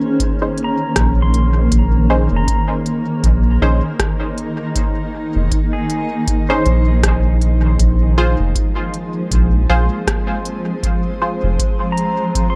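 A swung 79 BPM ambient dub groove in Bb minor rests on an overdriven analog kick and a tape-softened electronic kit of smooth hi-hat and rim click touched with dub echo, while a round, up-front sub bass enters at 1.0 seconds. A blurred, evolving granular pad with a gritty vintage sampler edge holds Bbm11 before shifting to Fm at 7.8 seconds, and muted, detuned chord stabs with chorus and echo pluck alongside it. Far back in the mix, a clean, twangy pedal steel arpeggiates with fingerpicks, slide and volume swells, its echoes adding to the spacious, hazy mood of this fragment from a longer piece.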